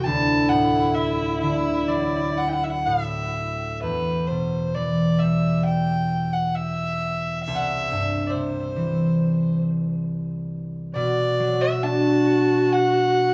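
A nasal, reedy fiddle with tape echo carries the longing melody of this haunting Celtic slow air in E minor, at 60-70 BPM with a rubato feel, over ringing fingerpicked concert harp, while a dark, woody viola with light vibrato adds a second line until 3.4 seconds and returns at 10.9 seconds, the band playing live in one room with light reverb as the chords move from Dadd9 through Em and C to Bm7 in this fragment of a longer piece.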